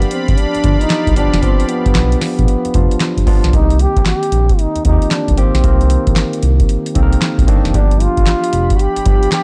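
R&B in a new jack swing style, this slick, punchy fragment of a longer piece moves at 114 BPM in C minor, with swung sixteenths and a harmony that shifts from G7 to Cm7 and back to G7. A breathy, close-miked trombone carries a mellow jazz-style solo melody with light vibrato over barky, bright tine electric piano accompaniment. A smooth sawtooth synth bass and an up-front, dry analog drum machine drive the groove with deep kicks, a tonal snare, metallic hats, handclaps and 12-bit sampler grit, while a swirling, detuned phased pad drops out at 3.5 seconds and returns at 8.6 seconds, all within a dark, warm digital ambience.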